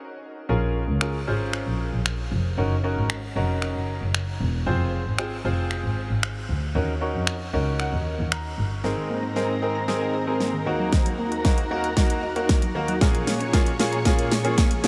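Dance-pop with a bittersweet yet confident mood, drenched in a huge ambient reverb that gives the mix a dreamy haze. A clear, polished baby grand piano carries the accompaniment from 0.5 seconds, breathing with sidechain pumping and a touch of analog chorus, while a dark, bowed double bass sits up front beneath it with light vibrato and a soft, intimate attack until 8.7 seconds. The pop drum kit enters at 1.0 seconds with a punchy kick, fat snare, hi-hat and finger snaps, sounding electronic, layered and up front. After a piano fill, the music turns into a build-up with a drum fill at 8.8 seconds, where a vintage, warbling organ-like string ensemble adds sustained chords. In the background, a woody, round FM synth pluck spins mellow arpeggios through chorus and delay, and chords move from Bbm7 through Gb6, Fm and Ebm7 to Abadd9 and Ebm before returning to Bbm7.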